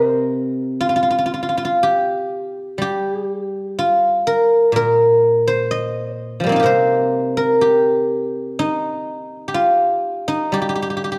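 A dark, warm production places a solo guzheng up front in a moderate recital hall, its reverb giving each plucked note room to bloom. This brief passage of Chinese traditional music, lifted from a longer piece, unfolds in a free, rubato 4/4 with an elegant, longing mood. Played with fingerpicks, the acoustic guzheng rings out with a silvery tone across a range from Bb2 to F5 for all 11.2 seconds.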